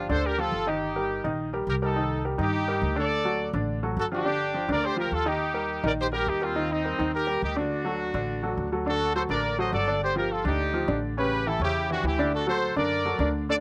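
Fiery and danceable, this salsa excerpt races along at 208 BPM in a straight 4/4, with a tight, up-front trumpet section carrying the melody over a brilliant, slightly detuned upright piano whose worn tone, audible action noise and slapback echo add character, while a woody, thumpy pizzicato upright bass anchors the low end, all captured dry and outdoors as the chords move from G5 and Cm7 through D before a later shift brings in A7.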